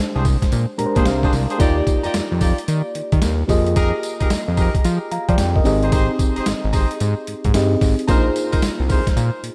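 Opening on a Bb13 chord, a mellow, round FM electric piano with chorus and a fat, detuned sawtooth analog bass with a filter sweep set up this flirty, upbeat new jack swing excerpt in Eb major at 111 BPM with a swung 16th-note feel, while a jazz-style horn section adds delayed stabs, a gritty, compressed sampler-style boom bap kit with overdrive, a thumpy kick, high-tuned snare, hi-hat and tambourine sits up front, the piano plays a fill from 0.5 to 1.6 seconds, and light reverb surrounds chords moving through Ebmaj9, Fm11, Abmaj7 and Bb9sus4.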